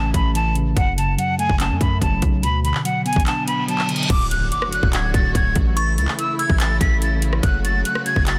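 A dense, heavily limited and dry mix carries this menacing, brooding half-time trap hip hop excerpt at 144 BPM, where a breathy, brilliant jazz flute sings an expressive, close-miked melody with vibrato and tape echo over a punchy, heavy 808-style bass and an up-front trap kit of hard-clipped kick, metallic hats, handclaps, rim clicks and crash, while a mellow tine electric piano accompanies until 4.1 seconds, when a background reverse cymbal and impact usher in a rich, smooth bowed string section, and a delicate, tinkling FM synth bell adds a chorused second line from 5.8 to 7.0 seconds.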